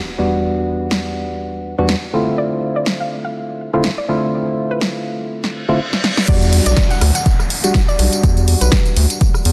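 Deep house at 123 BPM in E minor with a 16th-note swing and a warm, late-night mood, this excerpt opens on an impact as a hollow, nasal organ stab pumps against the sidechain through subtle chorus and tape echo over Em9 and Dm9 chords, joined by a dry, punchy analog drum machine with rim click, tambourine and hi-hat. A soft pluck melody carrying chorus and tape echo floats above from 2.4 seconds, and a reverse cymbal and drum fill lead into the drop at 6.3 seconds, where a round, mellow square-and-sine bass and an overdriven, layered kick arrive up front. The dense, heavily limited master sits in light reverb and shows lossy compression artefacts.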